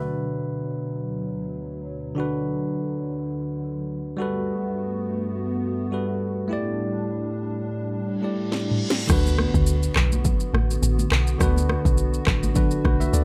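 Romantic and joyful, this afrobeats excerpt opens with a bright, bell-like tine electric piano over a hollow, flute-like pad softened by ensemble chorus, moving through rich chords in light digital ambience. A reverse cymbal rising from 8.3 seconds and a drum fill usher in an impact and the fuller groove at 9.1 seconds. There a produced afro-pop kit with a deep kick, sharp snare, handclaps, rim clicks, shaker, toms and crash sits up front, joined by a round, dark log drum bass, while high-tuned, ringing congas play in the background and the electric piano adds a short fill at the close.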